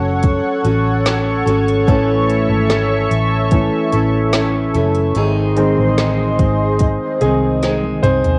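A hazy, tape-worn home recording with light reverb carries this longing, emotional pop ballad excerpt at 73 BPM, where a clear concert grand piano with long sustain takes the lead over a shimmering chorused pulse-width pad, full-bodied picked steel-string acoustic guitar arpeggios with finger squeak, a dark, foam-muted fingered electric bass and a smooth R&B drum kit with woody snare that enters at 0.2 seconds and closes with a fill at 7.6 seconds, moving through F#m, A and G#.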